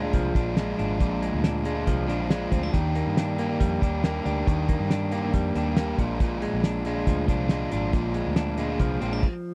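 A cloth-damped, thuddy drum kit with a fat snare, tight kick and dark cymbals sits up front in this nostalgic, youthful jangly indie pop excerpt at 139 BPM, alongside a bright, twangy clean electric guitar playing arpeggios with slapback echo, a crunchy overdriven guitar in accompaniment and a round, foam-muted vintage fingered bass, all moving from Bb7 to Ebmaj7 and back in a dry, close 1970s-style studio sound.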